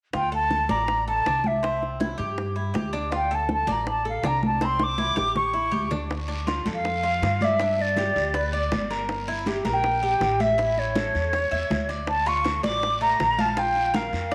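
A mellow, metallic Cuban tres picks arpeggios over woody pizzicato upright bass, round low-tuned bongos played with soft hands and bright, high-tuned congas set back in the background, while an airy, reedy concert flute with vibrato takes the melody up front, in a nostalgic, warm Cuban son and guajira at 161 BPM in D minor. A drum fill at 4.6 seconds leads into a shift to D harmonic minor at 6.1 seconds, where a raspy, distant guiro joins the groove. The ensemble sits in a moderate echo chamber reverb that gives this cut from a longer piece a roomy glow.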